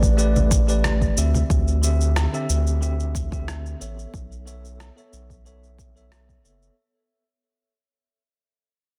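This short excerpt of sunset chillout opens with four parts already playing: a bell-like tine electric piano, a round analog bass, an electronic kick drum and a sampler-style shaker with rim click, moving at 91 BPM in a straight 4/4 with a relaxed, warm mood. The electric piano carries the chords, sounding bright and clean as if through built-in speakers, with tape echo trailing its voicings as the harmony moves from A9sus4 to D9sus4 at 1.2 seconds and on to B9sus4 at 4.1 seconds. Up front, the bass is deep and dark with a fast attack and sustained, sine-like tone. The kick is layered and produced, while the shaker and rim click have a gritty, compressed character, with soft clipping on the snare. Low-tuned congas with a thick-skinned, acoustic sound appear in the background from 0.4 to 1.5 seconds. Light reverb and digital ambience surround a dense, heavily limited modern master, and the whole passage sits within a fade-out.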